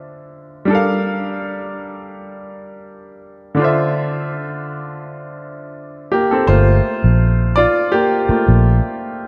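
A dreamy mix soaked in moderate plate reverb gives this short excerpt from a longer contemporary R&B piece a late-night, longing air. At 83 BPM in 4/4, with a light swing on the sixteenths, a clear, worn grand piano sits up front and carries the accompaniment from the very start, moving between Dm9 and Gm7 chords across its middle and upper register. At 6.5 s the piano takes a solo turn over a return to Gm7, and a vintage muted fingered electric bass enters low beneath it. The bass is dark, round and punchy, its foam-muted, amped tone placed up front and louder than the piano, before it drops out at 8.8 s. The piano's natural sound and the lingering reverb give the whole passage an intimate, hazy glow.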